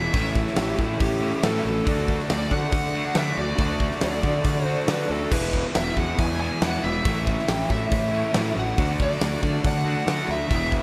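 A rock mix with light reverb carries this confident, swaggering classic rock excerpt, where a big drum kit with a fat snare and punchy kick joins a round, fuzzed fingered bass, two double-tracked rhythm guitars (one warm and distorted, one dark and crunchy in the background) playing riffs, a cranked lead guitar singing a melody through wah and overdrive, a dark slide guitar adding a second line from 0.6 to 8.9 seconds, and a very quiet, shouting tonewheel organ holding sustained chords through a slow rotary speaker over a chord cycle of A, D and E.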